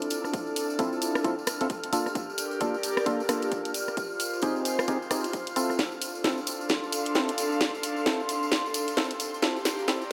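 Drenched in a wet plate reverb and heavy echo, this soulful, moody two-step garage excerpt sounds cavernous and hazy. Up front, a cracking, layered garage drum kit of hi-hat, rim click and snare plays with a swung feel, while a bright, jingly acoustic tambourine adds sparkle. A punchy, tape-warm electronic kick joins at 0.3 s and sits in the background, re-recorded in a large room. A hollow, mellow organ stab with a fast attack and decaying tail carries analog chorus and dub echo alongside a breathy, soft pad that pumps with the sidechain. Deeper in the mix, an ethereal, full-bodied pad holds sustained chords through Dm9, Gm9 and Fm9 with ensemble chorus and phaser, while a filter sweep on the pad runs through the whole passage as a build-up and a drum fill arrives at 5.8 s.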